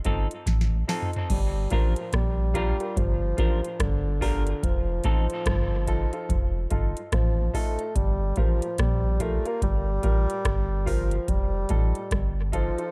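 This dub reggae fragment opens on a short break, with dark upright piano stabs set against a booming analog drum machine whose overdriven kit rolls into a fill before the groove settles at 72 BPM in a swung 4/4. The drums sit up front and dry, pairing a deep kick with a crisp snare, metallic hats, rim clicks, toms and crash. Beneath them, a soft, round sub bass with a fast attack holds the low end, while a very quiet, mellow electric guitar repeats a low fingered riff and a clean semi-hollow guitar adds echoing accompaniment until 5.3 seconds. At 1.3 seconds a punchy bassoon with a smooth top takes the solo melody in a classical manner, its phrases trailing off into dub echo, as do the woody piano stabs. The harmony in G minor moves between Gm7 and F7, and the echo-heavy, nearly reverb-free mix leaves a spacious, deep mood.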